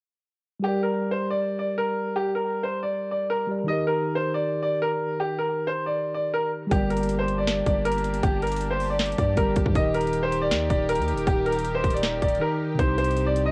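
A clear, up-front baby grand piano melody with analog delay and a mellow tine electric piano with cassette-tape coloring open this brooding, melancholic trap excerpt at 0.6 s, moving between G minor and E-flat chords at 158 BPM in a half-time feel. At 6.7 s a dark, floating bowed string section, a deep sine 808 bass, and an overdriven trap kit with a hard-clipped kick, sharp snare and metallic hats join. The drums briefly drop out at 12.4 s, just before the harmony turns to C minor at 12.8 s, all within a lightly reverberant home-cassette sound.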